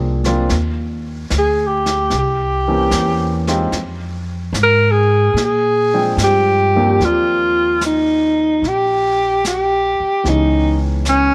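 Jazz ballad in Eb major at a slow 74 BPM with a swung feel, tender and late-night in mood, this excerpt from a longer piece opens with a warm grand piano comping and a woody, growly upright bass played pizzicato, joined at 0.2 s by a soft jazz brush kit on brushed snare and hi-hat. At 1.4 s a mellow alto saxophone takes the solo melody up front, with vibrato and scooped notes in a jazz style. Light reverb and a studio ambience surround the band as the harmony moves from Ebmaj7 through C7b9 and Fm to a lush Ebmaj13 at 7.0 s.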